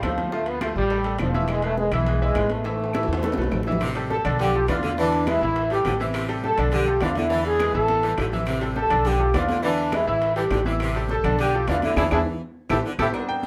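Danceable and driving, this salsa excerpt puts a clear trombone section up front on the melody, over a bright, worn concert grand piano with audible action noise and a growly, thumpy pizzicato upright bass. Congas, ringing timbales with agogo bells, and woody claves sit in the background, while very quiet, distant bongos and cowbell add to the percussion, with a drum fill at 2.7 s. An edgy, close-miked saxophone section joins with a second line at 3.8 s, and the band hits an accent together at 12.0 s, all in a small room with moderate reverb.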